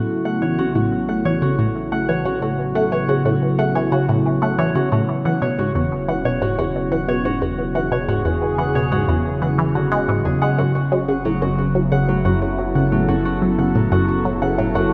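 Ambient, sequencer-driven space music at 90 BPM in a straight 4/4, hypnotic and expansive in mood, heard as a roughly 15-second portion of a longer piece. A bright, swirling analog pad holds sustained chords throughout, its detuned sawtooth tone treated with phaser and chorus, while a mellow, ringing Celtic harp plays fingerpicked arpeggios through tape echo. Up front, a juicy, squelchy blip pluck enters at 0.3 seconds with a riff, its resonant filter pluck colored by ring modulation, phaser, tape echo and vintage 12-bit sampler grit. Underneath, a fat, saturated analog bass fades in across the whole passage. The harmony moves from Aadd9 to E at 5.3 seconds and F#m at 10.6 seconds, all bathed in a lush, wet hall reverb.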